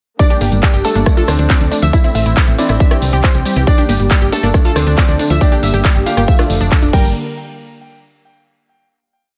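A bright, detuned unison pluck carries a repeating sixteenth-note riff over a pedal note with sidechain pumping and digital delay, doubled very quietly an octave higher by an airy supersaw stab and joined by a polished grand piano riff in octaves with delay, as dark bowed chamber strings sustain chords and a tight sequenced synth runs chorused, phased arpeggios in the background, while a punchy four-on-the-floor electronic kick, a big-room dance kit of metallic hats, claps, rim clicks and crash, jingly hand-played tambourine sixteenths and a round FM bass galloping in sixteenths from 0.4 s drive this soaring uplifting trance drop until a final hit at 7.2 s.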